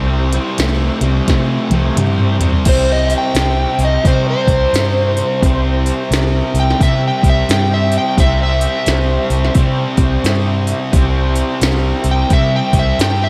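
An overdriven slide guitar with a dark tone and slapback echo takes a swaggering, raunchy solo from 2.7 seconds, riding over a swung 87 BPM blues rock and southern rock groove in C mixolydian that sits on a single C chord. Beneath it, a double-tracked fuzz guitar with a bright, picked edge plays the riff, a round, foam-muted fingered bass sits up front, and a gritty tonewheel organ holds sustained chords in the background through a slow rotary speaker and chorus vibrato. A soft, clicky, tape-warm electronic drum kit enters at 0.3 seconds and plays a fill from 1.3 to 2.7 seconds, and a lush hall reverb gives this section, cut from a longer piece, a big arena sound.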